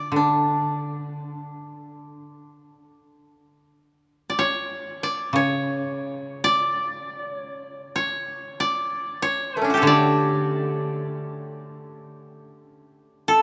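In free time, this austere, calm passage of Japanese traditional chamber music in a D ryukyu mode sets a bright, woody koto melody, plucked with fingerpicks between A3 and D5, over a softer, warmer koto accompaniment that stays low around C#3 to D3. Both instruments sit up front and close, set inside a long cathedral reverb, and the same phrase is stated twice. The accompaniment stops at 12.4 s, leaving the melody alone until the passage, cut from a longer piece, ends at 13.4 s.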